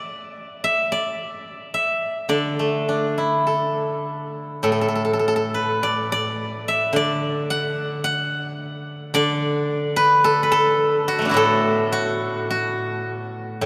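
A bright, silvery steel-string zither rings out alone from the first moment, played with fingerpicks and sitting up front in a serene, elegant piece of Chinese traditional solo music in the D gong mode. The rubato flow hovers around 50-55 BPM in 2/4, the acoustic instrument ranging from A2 to F#5, with a new section arriving at 4.7 seconds. A long, wet cathedral reverb of 5.9 seconds surrounds the playing in a church or concert hall, and this short passage is cut from a longer piece.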